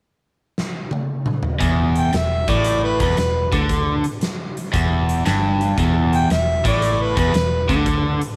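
A light reverb and small room ambience frame this brooding, gritty blues rock and southern rock excerpt in E minor, swung at 115 BPM, where a huge arena drum kit with a fat snare and punchy kick opens with a fill at 0.6 seconds. At 1.6 seconds a brilliant, double-tracked overdriven guitar riff sits up front over a dark, round, foam-muted fingered bass on an E minor chord. From 2.0 seconds a soloing harmonica, itself overdriven, adds a jazz-style melody with scooped notes, light vibrato and a smooth top.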